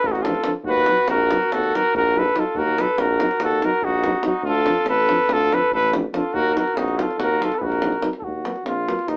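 A brisk 9/8 pulse at 285 eighth-note beats per minute drives this Balkan brass band cut from a longer piece, played with a straight feel in Eb Hungarian minor. The lead trumpet sits up front with a mellow tone, light vibrato and a smooth top, carrying a virtuosic, bittersweet melody in a classical style. A second trumpet, clear and distant in the room, adds a supporting line until about 8.1 seconds. Beneath them a tuba with vibrato holds the bass, and two euphoniums enter at 0.3 seconds in the background to fill out the accompaniment, one dark with a soft attack and the other lightly vibrato-tinged. A tight, compressed and saturated davul keeps the percussion going, while the harmony moves between D minor and Eb minor, all heard through a wet studio ambience with a small-speaker character.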